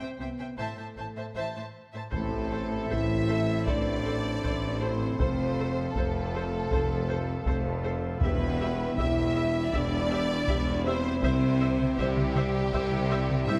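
Dramatic and epic, this cinematic orchestral film-score excerpt opens with lush bowed violins carrying a vibrato melody over a second violin line and smooth violas in the background, mellow close-miked French horn chords and clear cellos, with distant double basses entering below a moment later, until at 2.1 s a nasal cornet stop on pipe organ, a very quiet tuba, heavy-stick taiko and round soft-mallet timpani join, the whole set in a wet scoring-stage reverb.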